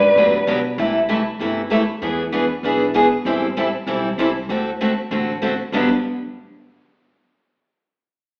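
A breathy, hollow alto ocarina and a dark, bowed violin with vibrato and portamento sound together only in the opening 0.6 seconds of this lively, playful excerpt of acoustic string swing in the gypsy-jazz manner. From 0.2 seconds, an up-front picked steel-string acoustic guitar with fresh strings carries the accompaniment through a Gmaj7, C6, E7, Am7, D7 progression, over a thumpy, woody pizzicato upright bass sitting in the background. The whole piece rings in a reverberant recital hall yet carries an AM radio character.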